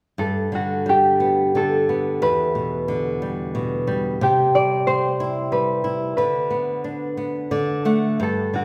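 A ringing, thumb-plucked concert harp carries a gentle, innocent lullaby melody from 0.2 seconds, set close and up front over fingerpicked flamenco guitar accompaniment, all in G major at 90 BPM in a rubato 3/4, tuned to A4 = 438 Hz. The chords move from Gadd9 through Em7, C and Bm/D to D, and a brief nylon-string guitar fill arrives at 7.2 seconds. A lush recital-hall reverb of about 1.6 seconds surrounds this short excerpt from a longer piece of children's music.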